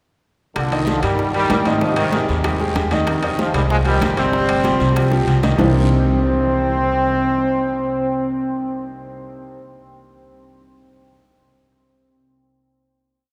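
Hand percussion drives a straight, danceable salsa groove in four from the first beat: congas with slaps and open strokes, bongos in steady eighths with a hand bell, timbales working shell pattern and bell from the background, and a raspy guiro in long and short strokes. Up front, a woody, thumpy pizzicato upright bass on gut strings plays a dark tumbao that anticipates the chords, while a clear grand piano lays down an open, long-sustained montuno in octaves. Over them, a brilliant, tight trombone section carries a passionate, motif-based melody in sentence-like phrases with light pop-style vibrato, partly doubled in thirds. After a drum fill at 5.0 seconds, the percussion drops out at 5.7 seconds, and the horns, piano and bass ring out on a final Cm9 chord, with bass and piano carrying on until just before 10 seconds. The whole short piece sits in a cathedral-like church or concert-hall space whose long, wet reverb gives the brass and piano a grand, resonant halo.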